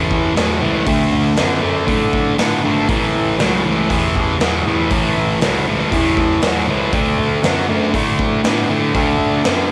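A straight 4/4 pulse at 119 BPM drives this short, swaggering cut from a longer piece of blues rock power trio and southern rock in A major, tuned to A4 = 436 Hz. A thick fuzz guitar carries the riff from the first moment, its bright, picked, double-tracked tone sitting up front and spanning A2 to B3 over chords that move from A to D, back to A at 2.9 seconds and to D again at 6.9 seconds. Beneath it, a concert grand piano takes the bass role between G#1 and A2, sounding smooth, deep and vintage at a lower level than the guitar. A raw garage drum kit enters at 0.1 seconds with hi-hat, a medium-tuned snare and a punchy kick, its saturated, gritty character framed by a bright stone room that pumps, with a rolled-off top. Studio ambience surrounds the trio, and the whole passage lasts a single section of about 9.7 seconds.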